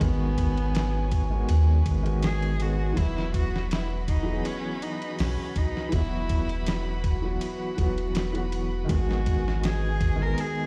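Heard through a big sound system in a bare stone room, with vinyl crackle over the top, this dark, cinematic trip hop piece moves at 81 BPM in 4/4 with a light swing on the sixteenths, shifting from G#m7 to Esus2 and back. A rich, smooth bowed cello carries the melody with dub echo, over a felt-muted upright piano whose mellow, intimate accompaniment carries tremolo and tape echo, and a chamber string section holds soft sul tasto chords with light vibrato. Underneath, a deep, round dub sub bass sits up front until 10.3 s, while a gritty, compressed sampler-style drum kit with thumpy kick, snare, hi-hat and ride adds dusty, room-recorded weight.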